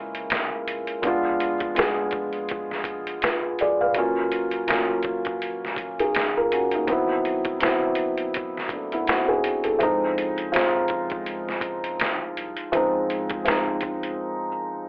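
A lazy swing on the sixteenths gives this mellow, dreamy lo-fi hip hop excerpt its loping 4/4 feel. A sampler-style trip hop kit sits up front with a thumpy kick, a medium-tuned snare and hi-hat, all compressed, pitched down and muffled, as if re-recorded in a small room. Beneath it, a deep, thick sub bass with a saturated triangle tone holds sustained notes in the background. The felt-muted upright piano carries the harmony close to the ear, soft and dark, with its action noise audible, moving from Gbmaj9 through Bb7b9, Ebm9 and D13 to settle on Dbmaj9. The whole mix wears a worn cassette patina, with warbly pitch drift, a narrow telephone-like colour and moderate studio ambience. At 14.2 seconds the bass and drums drop away, leaving the piano alone in a brief break until 14.9 seconds.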